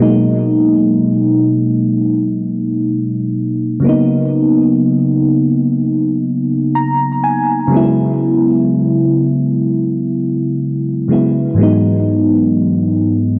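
The sound is a dusky home cassette recording, its highs rolled off above 7.7 kHz and set in a small room with a moderate, short reverb. Alone and up front, a mellow FM electric piano carries this longing, sensual slice of slow R&B at 62 BPM in straight 4/4, in G# minor. Its tone is soft and round, with a fast attack that decays, a noise layer beneath, and chorus, cassette tape colour and tape echo shading every note. The harmony moves from G#m9 to Bmaj9 at 3.8 seconds, then to F#9sus4 and finally Emaj9/G#, spanning G#2 to A#5. A brief piano fill between 6.3 and 7.7 seconds adds a moment of ornament before the music is cut off mid-piece.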